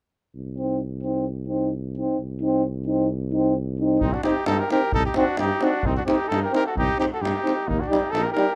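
A rough home-demo sound with light reverb frames this bittersweet, fiery Balkan brass band fragment in 2/4, where an up-front, smooth-topped tuba and two euphoniums, one clear with a vintage tint and one mellow with a trace of vibrato, lay down a Cm foundation before a warm cornet melody, a distant, soft-attacked trumpet second line and a tight davul heard in a large room all enter at 4.0 seconds.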